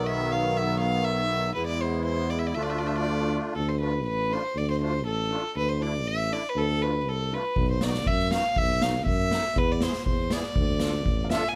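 A rich, floating violin carries the melody up front over a shimmering musette accordion and a punchy tuba in this bittersweet, festive klezmer piece at 120 BPM in D dorian sharp4, with an airy street-band drum kit of boomy kick and snare entering at 7.6 seconds and a muted, boxy upright piano touching in briefly at 11.2 seconds.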